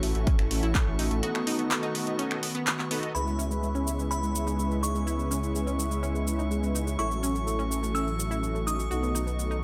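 Under light reverb, this cut from a longer progressive house track feels driving and bittersweet, with a dark, rumbling detuned saw bass pumping up front beneath a deep house kit of cabasa, finger snaps, handclaps and hi-hat, plus a brief punchy, tape-warm electronic kick near the start. Mellow supersaw stabs move through filter sweeps while a round analog pluck arpeggiates, and a breathy pad and a drifting glass-harmonics texture hold in the background over chords circling A6, B7 and C#m7. After a break from 1.2 s, a crystalline FM bell melody with 12-bit sampler grit and digital delay enters at 3.1 s, as the pluck takes on its own filter sweep.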